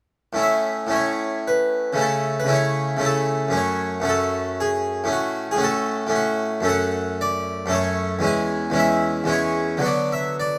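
In a flexible, rubato triple metre, this radiant, dance-like baroque-style suite movement, cut from a longer piece, features a solo harpsichord in the French style, with a full, plucked tone from two sets of strings. Close microphones place the instrument up front and capture it dry and detailed, with only a light touch of room reverb. Around 6.7 seconds the harmony darkens toward a minor key before the passage breaks off at 10.6 seconds.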